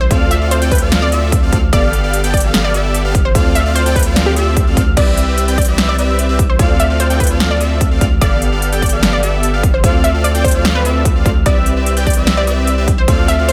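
A saturated sub bass and a bright, detuned unison pluck open this dreamy, lush future bass excerpt at 148 BPM in a half-time feel, both pumping with sidechain and the pluck trailing a digital delay as it carries the melody between G4 and E5. From 0.1 seconds a fat sawtooth polysynth riff with chorus, a soft, airy arpeggiated lead high in the background with chorus and delay, and an overdriven big-room kit with a punchy kick, crisp hats, snare and crash join in, the drums set in studio reverb. The harmony cycles through Dm7, G9, Dm7 and Cmaj9 in D dorian, all within light reverb and digital ambience, until the kick stops at 13.2 seconds.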